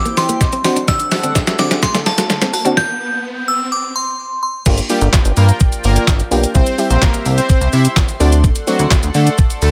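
Dry and high-pass filtered, this confident, bittersweet dance-pop excerpt at 127 BPM in G dorian opens on a build-up in which a crystalline FM bell melody, a round analog pluck, a shimmering pulse-width pad, a background riser, a compressed clean electric guitar riff and a woody mallet-like pluck arpeggio sit over a thumpy, tape-warm 8-bit drum machine fill; after a stop at 2.8 s, the drop at 4.7 s brings in a glossy, nasal synth bass up front and a smooth, detuned supersaw melody over Gm7, C and D7.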